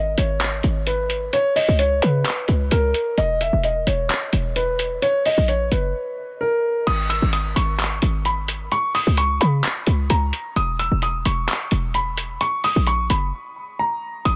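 A half-time trap groove carries this brooding, menacing hip hop clip, with a punchy, tight 808-style bass sitting up front beside a lo-fi sampler-style kit of crash, handclaps and hi-hat that enters at 0.2 seconds, its hits compressed and muffled as if re-recorded in a small room. Over them a dark, intimate concert grand piano carries the melody, its mellow, vintage tone filtered and touched with digital delay, with the action noise of the instrument audible. The chords cycle twice through the same minor progression under light reverb, and the groove drops into a brief break at 5.9 and 13.3 seconds.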